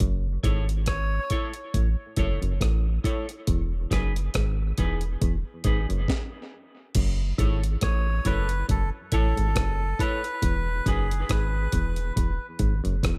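A gritty, compressed breakbeat kit with a thumpy kick and high-tuned snare, a deep, round sub bass and a muted, stringy clav riff soaked in tape echo open this hypnotic, heavy dub reggae piece at 69 BPM in F# dorian; a clean semi-hollow guitar with subtle chorus and echo slips in at 0.4 seconds, a reedy, breathy melodica offers a brief echoed phrase, the groove stops at 6.1 seconds, and the melodica returns to carry the melody from 7.8 seconds, all set in a digital ambience.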